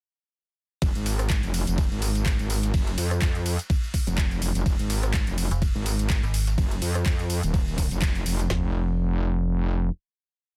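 A short, aggressive and bouncy bass house piece bursts straight into its drop at 0.8 seconds, with a distorted, metallic wobble bass pumping up front over an overdriven garage kit's knocking four-on-the-floor kick, woody snare and toms, a second garage kit of claps, tambourine, rim clicks, ride and metallic hi-hats, and a gritty, very quiet looped breakbeat tucked underneath; a mellow, digital FM bass cuts in with chopped phrases at 5.5 seconds before a band accent at 8.0 seconds and a final wobble bass note close out the dry, dense, heavily limited mix.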